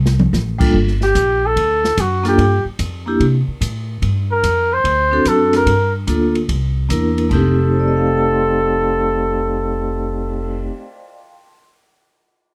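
A short drum fill at 0.0 s kicks off this swinging small-group jazz excerpt at 146 BPM in F mixolydian, with a woody, growly pizzicato upright bass up front and an open kit of dark cymbals and a boomy kick sitting back in a small room. A bright, ringing vibraphone with fast motor vibrato enters at 0.6 s, and at 1.0 s a veiled, bucket-muted trumpet takes the solo melody with vibrato and a punchy, forceful jazz attack. The dry, close 1970s-style studio sound carries a light reverb, and the harmony moves through Gm7, D7 and C7 toward F13 as the second section arrives at 7.3 s.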